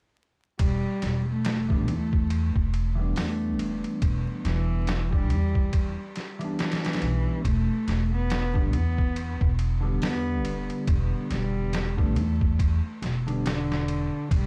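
At 0.6 seconds, a bowed cello with vibrato and 12-bit sampler grit and dub echo enters alongside a woody pizzicato upright bass and a gritty, pitched-down sampler-style drum kit with a thumpy kick. This dark, cinematic trip hop fragment sits at 70 BPM with a swung 4/4 feel over an Em7 in E minor. From 1.7 seconds a clean, fingered electric guitar with harmonic tremolo adds accompaniment, all in a dry, close production flecked with vinyl crackle.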